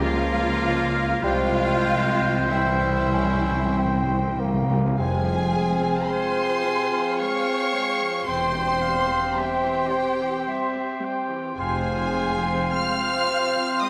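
In a triple metre that stretches and yields with rubato, this slow romantic orchestral movement unfolds with a yearning, melancholic cast, cut from a longer piece. A close, expressive violin section carries the melody high in its range, shadowed by a second violin line of rich, soft-attacked tone, while a bright clarinet and a clear, distant oboe weave their own second lines. Lush violas fill the inner accompaniment, a mellow French horn section holds sustained chords in the background, and bowed cellos and distant double basses anchor the bass until they drop away around 12.5 seconds. From 1.2 seconds an airy, hollow flute ensemble with rolled-off highs joins in the background alongside a solo bassoon, and timpani struck with hard mallets add an articulate fill that runs to 5.0 seconds. The harmony moves from a minor colour through a major chord into the home minor, where the second section begins, all bathed in a generous scoring-stage reverb.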